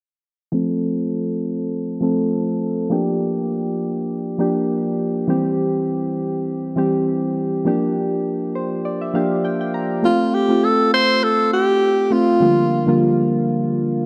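Mellow and smooth, this afrobeats excerpt at 101 BPM with a lightly swung 16th feel opens on soft, round electric-piano-like synth keys with chorus and a filter sweep over chords moving from F to Gm7 and C, with a keys fill from 8.3 to 10.0 seconds, before a breathy alto saxophone with vibrato and delay carries the melody from 10.0 to 13.0 seconds, all bathed in a lush hall reverb within a dark production.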